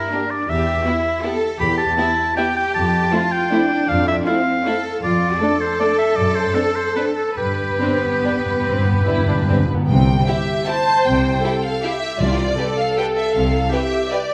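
A clear, up-front solo oboe with light vibrato sings a second line over an elegant, festive orchestral ballroom waltz in C major, moving in a rubato 3/4 between 133 and 172 BPM. Lush bowed violins carry the melody with a focused, smooth top, while a background violin section, an even viola section, rich cellos and double basses, and a mellow, soft-attack French horn section supply a further second line, accompaniment, bass and sustained chords. Round, soft-mallet timpani enter at 7.4 seconds with a fill, and the oboe and horns stop near 9.7 seconds as the music settles onto C, all within a moderate scoring stage reverb.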